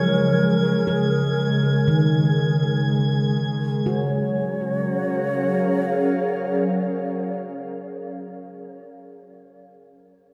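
An ethereal pad sits up front, dark and chorused, holding sustained Gbmaj9 chords through this serene ambient fragment at 60 BPM in Gb major. A ringing handpan plays arpeggios and a breathy, bright shakuhachi carries a melody with vibrato, both touched by tape echo, over a mellow organ-like drone in the background, while a bowed violin section floats a single high Ab6 until 3.9 s. The mix is set in a vast, echoing cathedral space.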